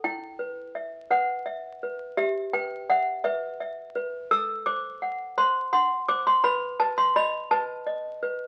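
A solo toy piano opens the recording against the crackle of a very old 78 rpm record, setting a wistful, eerie tone for this brief classical lullaby in E minor. The piece moves slowly in 6/8 at 56 beats per minute, counted in dotted quarters, with a straight feel. Placed up front, the toy piano sounds clanky and bell-like, its plastic hammers giving a bright edge, and its slightly out-of-tune pitch adds to the unsettling charm. Spanning E4 to E6, it moves through a short progression of Em, Em/G, F#dim/A and then B, the diminished chord and the closing B leaving the phrase hanging. A moderate studio reverb surrounds the instrument with a modest sense of space. The 8.5-second passage is cut from a longer piece.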